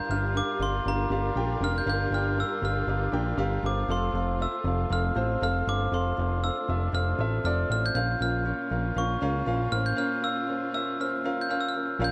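A bright, sparkling glockenspiel struck with hard plastic mallets carries the melody up front, its metallic, bell-like tones ringing high above this hopeful, warm piano-driven pop piece, cut from a longer work. Underneath, a clear grand piano plays the accompaniment with an intimate, natural sound in which the action noise is audible. A fat analog bass joins at 0.1 s, thick and saturated with sawtooth and square-wave character, a fast attack, sustained notes and an evolving filter sweep, and it sits up front in the mix. In the background, a lush studio string section holds sustained bowed chords with expressive vibrato, portamento and a smooth top. The groove moves at 118 BPM in 4/4 with a light swing on the sixteenths, passing from Gm7 to F and then Bbm. Light studio reverb gives the mix a gentle sense of space.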